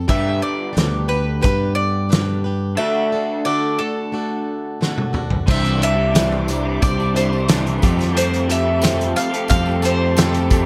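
This folk rock and heartland rock excerpt carries a hopeful, open-road mood over a straight 4/4 feel, moving from G to D before shifting to Cadd9 at 5.5 seconds and Fadd9 at 7.8 seconds. A bright bowl-back mandolin with doubled strings carries the melody, while an electric guitar through a small old amp plays a twangy, slightly broken-up riff with analog chorus, and a dark, boxy plugged-in swing-style acoustic guitar picks out accompaniment beneath. The loose indie drum kit sits up front with a punchy kick, fat snare and dark cymbals in a pumping studio room, joined by a fingered electric bass that is punchy and up front. A drum fill ends the opening section, and at 5.5 seconds a very quiet, woody string section enters with bowed sul tasto chords, lush and smooth on top, followed at 6.2 seconds by a jingly, close and dry tambourine. Light reverb and studio ambience give the whole a dark, warm production.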